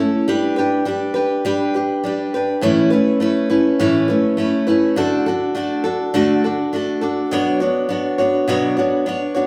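A woody, up-front picked steel-string acoustic guitar on old strings plays alone through this hopeful, open-road rock excerpt at 102 BPM in a straight 4/4, moving through G, Aadd9, D and Bmadd9 and ranging from A2 to C#5, all set in a lush large-studio reverb with a live-room feel.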